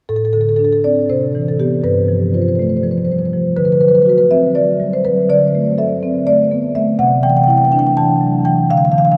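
Flowing and reflective, this contemporary classical passage for solo marimba drifts in a loose, rubato 7/8. The marimba, played with medium mallets, sits up front with a woody tone from its rosewood bars, and its range reaches from G2 to A5. A cathedral reverb with a long 6.6-second decay surrounds every stroke, and the production leans dark and warm. The harmony moves through extended, open chords, from Amadd11 to Cmaj7, G9sus4, D6, Amadd9/D and finally Cadd9. The marimba plays alone from 0.1 to 9.2 seconds, in a short section cut from a longer piece.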